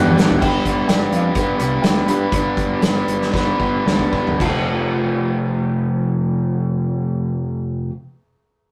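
Upbeat and jangly, this indie rock cut from a longer piece in F lydian moves in a straight 4/4 between 109 and 130 BPM, opening on a drum fill and slowing down through its first few seconds as the harmony shifts from G to F at 4.4 seconds. A crunchy, overdriven guitar riff sits up front beside a loose, roomy acoustic kit with dark cymbals and a tight kick, which plays another fill before stopping at 4.5 seconds. Meanwhile, a round picked electric bass with its own drive and a mellow, woody upright piano melody with short sustain stay in the background, all within a rough rehearsal-room sound that carries tube saturation and moderate studio reverb.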